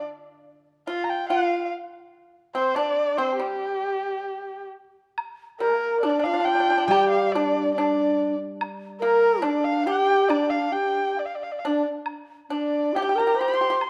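A dark, woody erhu carries the tender, graceful melody of this Chinese traditional chamber piece, its bowed line shaped with vibrato and portamento over a dry, percussive pipa that joins at 0.9 seconds. At 5.2 seconds a close woodblock enters, soon followed by an airy bamboo xiao with a crisp attack, and a silvery steel-string zither rings briefly from 6.9 seconds, the whole moving in a rubato 70 BPM in G yu mode. A moderate recital hall reverb and warm production frame this passage, cut from a longer work.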